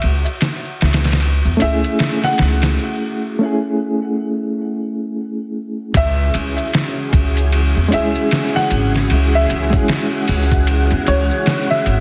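Trip hop with a melancholic, hypnotic pull, where a woody pizzicato upright bass and a gritty, pitched-down sampler-style drum kit with a thumpy kick sit up front in a small room, joined by close maracas and triangle and an airy, wind-like tuned noise texture in the background, while a soft, felt-muted upright piano with audible action noise and tape echo carries the melody from 1.6 s over a reedy electric piano with fast tremolo and 12-bit sampler grit, and a mellow string machine cello layer with ensemble chorus adds sustained chords from 5.9 s, the whole excerpt carrying a heavily compressed, radio-like sheen.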